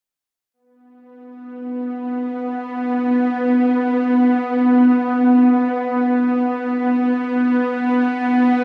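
Ambient and peaceful yet luminous, this short cut from a longer piece centers on a single bowed-like drone that enters at 1.6 seconds, its nasal, detuned sawtooth tone sitting bright and up front with vibrato and a noise layer, and blooming slowly into a vast cathedral reverb that lets it ring on in an echoing space.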